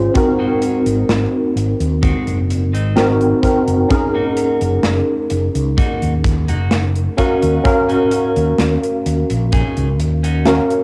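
A slow, straight 4/4 pulse at 64 BPM drives this melancholic, woozy vaporwave fragment, tuned slightly flat to A4 = 436 Hz, where a worn, slightly out-of-tune tine electric piano sits up front through ensemble chorus, cassette tape, analog delay and plate reverb over Ab7, Gb6 and Ebm7 chords. A round, dark, amped fretless electric bass anchors the low end while a quieter, picked clean electric guitar riff carries subtle chorus, 12-bit sampler grit, tape and delay, and a big-room acoustic kit with punchy kick, hi-hat and medium-tuned snare, all set in a moderate booth ambience on a home cassette recording.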